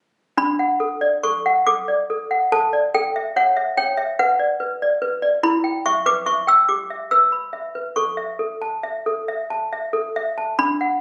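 A lone toy piano enters at 0.4 s with a dreamy, tender classical lullaby in a gentle 6/8 lilt, its clanky, bell-like tone slightly out of tune, the plastic hammers sounding bright and up front. The harmony moves from D through A, Bm, Em and Em/G before settling on A, in a passage cut from a longer piece that runs to 11.0 s. The phone recording in the room adds light club reverb and compression, giving the intimate little instrument a homely glow.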